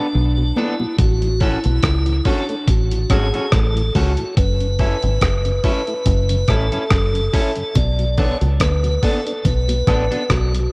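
A dark, foam-muted fingered electric bass sits up front in this spacious, heavy dub reggae excerpt, its round, punchy tone thickened by transformer saturation. After a one-second break, a compressed, sampler-style soul drum kit enters at 1.0 seconds with a thumpy kick, gritty hi-hat and rim click, re-recorded in a large room and given a lightly swung sixteenth-note feel. A piping, scooped tonewheel organ carries the melody, lightly overdriven with audible key click and trailing dub echo. Both organs turn through a slow rotary speaker, while a mellow, clean second organ with vibrato holds the background. A twangy, picked electric guitar at the edge of break-up adds accompaniment through cassette grit and its own dub echo. Very quiet, high-tuned congas with a damped, thick skin appear briefly at the start and return at 7.8 seconds, as the chords move from Bm7 through A6 and F#m7 back to Bm7 under light reverb and the hazy character of a home cassette recording.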